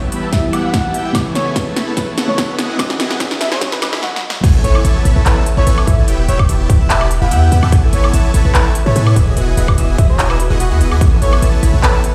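A half-time future bass groove drives this playful, lush excerpt, where a veiled, breathy cup-muted trumpet sings the melody with light vibrato over huge, detuned supersaw chords, a soft felt-muted upright piano, a faint airy pad and a very quiet electronic riser during a build-up with drum fills and a filter sweep, until the drop at 4.4 s brings in a deep, boomy 808-style bass and ringing fingerpicked concert harp arpeggios beneath a punchy, overdriven electronic kick and a big-room dance kit of crisp hats, snare, handclaps, crash and woodblock, with sidechain pumping on several parts and a stone room reverb around the whole.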